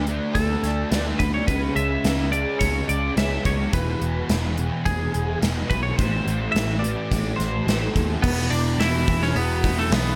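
Shoegaze and dream pop with a rock spine, this short excerpt feels blissful and dreamy in a straight four-four pulse. A bright, twangy twelve-string electric guitar carries the melody, its clean, compressed picking trailed by digital delay. Beneath it, a thick, double-tracked fuzz guitar plays an up-front riff, its distorted tone thickened by ensemble chorus. A vintage electric bass, dark, round and foam-muted, anchors the low end with a punchy, amped sound. A gated 80s acoustic kit enters at 0.1 seconds, with a medium-tuned snare, punchy kick, hi-hat and crash cymbals sitting forward in a stone-room sound. The harmony moves from D5 through C#m, E and Am before the music shifts to a new section on an E5 chord at 8.2 seconds, all in a dry, close mix.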